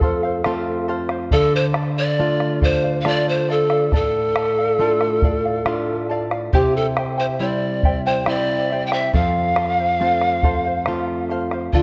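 A moderate concert hall reverb with a 2.4-second decay surrounds this melancholic, wistful Andean folk excerpt, moving at a slow 69 BPM in 3/4 over F, Dm and C. A bamboo pan flute carries the melody up front, its breathy, chiffy soft attack, vibrato and unsteady delivery giving it a fragile, mellow voice with rolled-off highs. Beneath it a shimmering, fingerpicked charango with double strings and an up-front, fingerpicked flamenco guitar provide accompaniment, while a round bombo, close and dry, adds the percussion.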